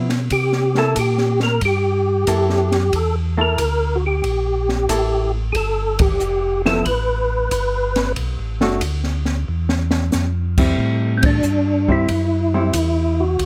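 Dark, picked hollow-body electric guitar accompaniment and a round organ bass line through a slow rotary speaker open this greasy, soulful soul jazz organ trio cut at 92 BPM in swung 4/4. They are joined at once by an acoustic drum kit with a high-tuned snare and boomy kick, and by an up-front percussive organ melody with key click, third-harmonic percussion, chorus vibrato and a fast rotary speaker. The harmony moves from C13 through G9, Bm7 and Cadd11/E to Am7, with band accents at 5.9 and 11.1 seconds, a drum fill at 9.5 seconds, and a dry, close, detailed sound.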